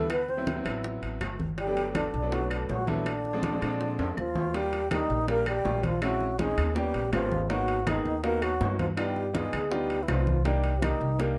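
This short excerpt of sophisticated, danceable Afro-Cuban jazz opens at 162 BPM in a straight 4/4, as a bright, reedy wooden-headed alto flute carries the melody with vibrato and tongued notes over a soft, veiled trombone in a cup mute playing a second line. A clear, natural grand piano supplies the accompaniment, while a pizzicato upright bass with gut strings sits up front, thumpy and woody. Congas, bongos, timbales and claves join at 0.1 seconds, the congas thin-skinned and low-tuned, the bongos round and dry under hard hands, the timbales ringing from a distant, large room, and the claves clicking woodily in the background. The harmony moves through rich extended chords such as D13 and Gmaj9 before a drum fill at 4.0 seconds leads into a new section in Eb major at 4.5 seconds, passing through Ebmaj7, Abm7 and G7b13 before settling on Cm7. Light reverb gives the ensemble a sense of space, and the claves stop at 11.0 seconds as the rest of the band plays on to the cut.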